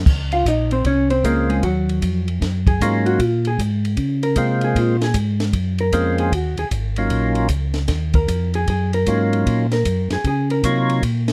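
Soul jazz in an organ trio setting, this late-night, soulful excerpt swings easily in 4/4 and is cut from a longer piece. A mellow tonewheel organ carries the bass line from the opening, its round, dark, clean tone colored by vibrato, key click and a slow rotary speaker. A compact acoustic cocktail drum kit sits up front with a dry sound, dark cymbals, a high-tuned snare and a punchy kick, moving between hi-hat, ride and crash. A vintage hollow-body electric guitar, clean and picked, comes in at 0.3 seconds and takes a solo throughout. A second tonewheel organ enters with the melody at 1.2 seconds, fat and lightly overdriven with third-harmonic percussion and its own slow rotary spin. The harmony moves between Bbm7 and Ebm7 under light reverb, in a dark, warm production.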